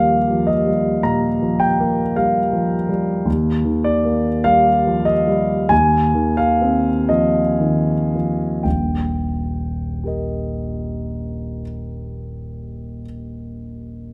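A concert grand piano, warm and intimate, sits up front in this brief fragment of a longer impressionist classical piece, its action noise audible beneath the notes. The mood is dreamy and hazy, with a slow, rubato 4/4 pulse that moves between 35 and 56 BPM and slows over the first 8.6 seconds. Set in Eb major, the harmony drifts from Ebadd9 to F5 over an Eb bass before settling on a plain Eb chord at 8.6 seconds, where a new section begins and carries on to the close at 14.1 seconds. The piano reaches from deep bass tones up into the upper register, and its long sustain lets chords hang in the air. Close, detailed microphones and light reverb keep the sound natural and intimate.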